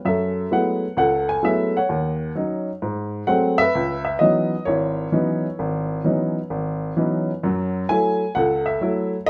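Swung eighth notes in 4/4 give this brief, smoky fragment of solo jazz its easy lilt, carried entirely by an upright piano that plays from 0.1 s to the close at 9.3 s. The piano sounds woody and up front, ranging from G#1 to G#5 inside a moderate studio reverb. Its harmony moves through F#m11, D#m7 and G#7b9 to rest on C#m11, then turns to F#m7 as a new section begins at 7.4 s.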